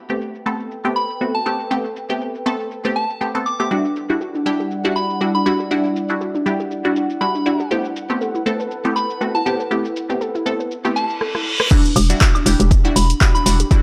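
A muted, phased dub chord stab and a dry analog drum machine of handclaps, hi-hats, rim clicks, shaker, woodblock and crash open this smooth, late-night deep house passage at 120 BPM in E minor, soon joined by a nostalgic, lo-fi tape-like pad under a filter sweep and a soft, pure synth bell melody with digital delay. A dusty, warbling pluck adds arpeggios from 3.7 seconds onward, and a reverse cymbal and drum fill lead into the drop at 11.7 seconds, where an overdriven electronic kick and, from 12.0 seconds, a hollow, bouncy FM bass arrive up front in the plate-reverb sheen.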